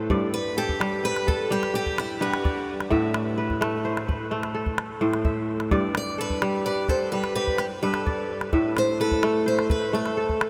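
Soaked in a huge ambient reverb, this dreamy, hypnotic excerpt of West African string and xylophone music flows in 12/8 at 86 BPM in G major, moving between G and A minor. The up-front kora opens at 0.0 seconds with ringing, crisp fingerpicked arpeggios, and a deep, close calabash joins on percussion. From 0.3 seconds a bright picked steel-string acoustic guitar carries the melody through an analog delay, with audible finger squeak.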